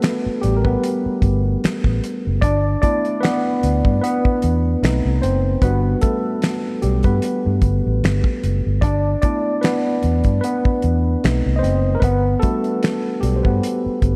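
A worn, slightly out-of-tune tine electric piano takes the lead over a damped 70s drum kit from the start, its clean tone heard through built-in speakers and moving between Gmaj9, G6 and B7b9 in G major. A vintage foam-muted fingered electric bass joins at 0.3 seconds, round, punchy and amped, while the dry, dark kit offers a fat snare, tight kick, hi-hat and finger snaps with a rolled-off top. This soulful, smooth neo-soul R&B excerpt sits at 75 BPM in 4/4 with a lightly swung sixteenth feel, every part up front in light reverb and studio ambience.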